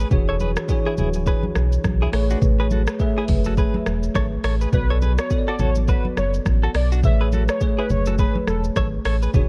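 A worn, warbling cassette-tape sheen with drifting pitch and digital ambience colours this joyful, breezy afrobeats excerpt in A major, moving at 104 BPM with a swung sixteenth-note feel over E13, Amaj9 and Bm7 chords. Up front sit an electronic afro-pop drum kit with a deep kick, metallic hats, rim click and shaker, and a full sine-and-triangle sub bass with its octave. Hard-handed congas play in the background, a bell-like tine electric piano with ensemble chorus carries the accompaniment, and a clean, compressed direct electric guitar picks a warm riff through tremolo and digital delay, while a velvety, detuned sawtooth synth lead with vibrato, chorus and a filter sweep takes the melody at 4.7 s.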